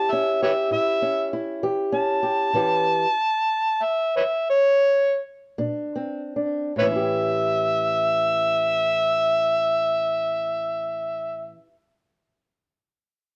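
Overdriven harmonica and fingerpicked ladder-braced acoustic guitar start together in this short excerpt of gritty, swaggering acoustic country blues in 12/8, set in A mixolydian at a slow 48-66 BPM that slows down from 1.3 to 6.8 seconds. The amplified harmonica carries the melody up front with light vibrato, tongue slaps and scooped jazz-style notes, bathed in plate reverb, while the dark, woody, boxy guitar on old strings accompanies, moving from A7 to Bbadd9 before returning to A7 at 6.8 seconds. A small room and worn, warbling cassette tape give the sound a wavering pitch drift.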